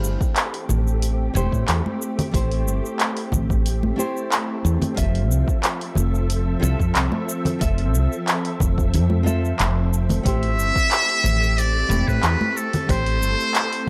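A muted trumpet with a buzzy, thin tone and light vibrato enters at 10.3 seconds with a tape-echoed melody over this relaxed, smooth sunset chillout piece in A minor at 91 BPM, cut from a longer work. Beneath it, a fingerpicked nylon-string guitar with finger squeak and analog delay sits with a silky, warbling string machine holding sustained chords over Am7 and Fmaj7. A round, woody fretless bass, a deep house kit with dark hats, handclaps and shaker, a punchy electronic kick and bright, close congas carry the groove in a dry, gritty recording.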